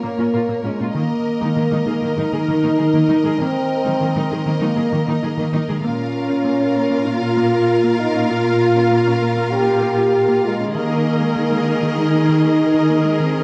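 A dark production on a moderate scoring stage, with 1.6 seconds of reverb, frames this cinematic fragment, cut from a longer piece, which moves at 98 BPM in a straight 4/4 and feels vast and relentless. The French horn section sits up front, its dark, roomy sustained chords carrying a light vibrato and the strongest presence in the mix. Beneath it, the cello section supplies a close, expressive bass with a soft attack, while the viola section's rich, intense bowing fills out the accompaniment with a smooth top. The violin section plays a smooth, even second line with lush vibrato, sitting lowest of the strings in level. In the background, a round, tine-like synth pluck resembling a thumb piano spins decaying arpeggios, its nasal FM tone colored by chorus and digital delay. All five parts play from the opening to about 13.4 seconds over an alternation of Bbm and Ebsus4.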